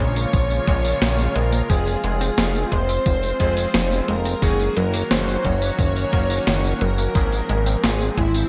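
A glossy, nasal chorused synth bass sits up front in this nocturnal, nostalgic synthwave excerpt at 88 BPM in F phrygian, moving through Bbm7, Fm, Ebm7/Gb and Fm/Ab beneath a round, mellow octave-layered lead melody with chorus, vibrato and delay, shadowed by a shimmering string machine line with ensemble chorus and a cassette tape tint. A lush, detuned pad holds sustained chords with sidechain pumping, a very quiet punchy unison pluck spins arpeggios, and a bright, cutting electric grand piano adds clangy stabs in the background. From 0.2 seconds, a clean 12-bit drum machine brings overdriven hi-hat, snare and tambourine with gated reverb, joined at 0.3 seconds by a thumpy overdriven electronic kick, all within a bright 1980s-style digital production with light reverb.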